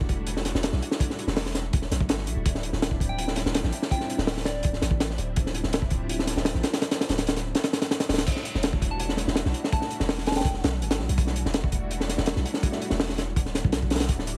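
A crunchy breakbeat drum kit sits up front, its saturated, gritty tone, tight kick, high-tuned snare and dark cymbals driving this dark, atmospheric 165 BPM drum and bass and jungle cut in E minor, heard as a fragment of a longer piece. Beneath it a deep, sine-based 808-style bass holds long decaying notes, while a silky, warbling string machine with ensemble chorus sustains Em11 and Dm11 chords in the background. A soft FM synth bell, treated with chorus, phaser and dub echo, adds pure, gentle phrases at 3.1 and 8.9 seconds.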